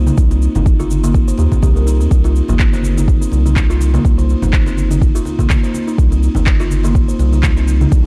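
A round, nasal analog bass opens this dark, spiritual afro house passage in C minor at 124 BPM, pumping under an overdriven, up-front electronic kick, while a buzzing, woody kalimba plays filtered, delayed arpeggios over overdriven electronic cabasa and handclaps and low-tuned congas set back in a small room, before a faint noise sweep arrives at 8.0 seconds.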